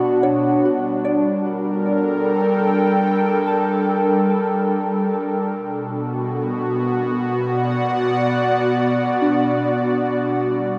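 In free time and unhurried, this serene, reflective ambient piece rests on an airy, breathy pad sitting up front with sustained, slowly blooming chords colored by chorus, moving from Bm to Gmadd9 at 0.6 seconds and back to Bm at 5.5 seconds. Alongside it, a soft FM synth bell plays gentle, pure arpeggios with quick decaying notes, treated with chorus, phaser and delay. A huge, wet reverb with an 8.0-second tail bathes the whole passage, which is cut from a longer piece.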